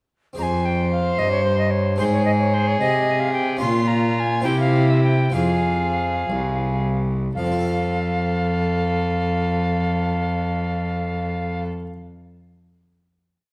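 A rich, up-front cello with a reedy gut-string tone enters at 0.4 seconds in this short, complete baroque-style sonata movement in F minor, just after the harpsichord begins at 0.3 seconds, supplying a walking bass and sustained low notes beneath the ensemble. Above it, a soprano recorder carries the flowing, grave melody with an airy, wooden sound, gentle vibrato, soft attacks and rolled-off highs. A single period-style violin, bowed with light vibrato and a rich, reedy gut-string tone, adds a counter-melody and sustained chords in the middle register. A close-miked, dry harpsichord with two sets of strings fills out the continuo in the French manner with rolled chords. In a straight 6/8 at 54-75 BPM counted in dotted quarters, the music moves from Fm through Ab, Bbm and C7 back to Fm, slowing from 2.8 seconds before settling on a final F chord at 7.4 seconds. The whole is set in a recital-hall reverb with a dark, warm production.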